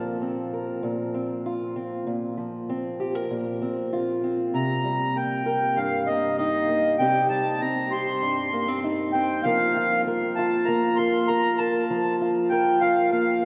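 A reedy accordion with a slow beating shimmer enters at 4.5 seconds, carrying the high melody up front over a fingerpicked acoustic archtop guitar that opens the excerpt alone, its finger squeaks audible in the close, intimate playing. This haunting acoustic folk piece moves at 98 BPM in a straight 4/4, drifting from Bbsus2 to Cm7 before shifting to Fsus4 at 9.4 seconds. The pair sits in a church or concert hall whose long cathedral reverb lets every note hang in the air.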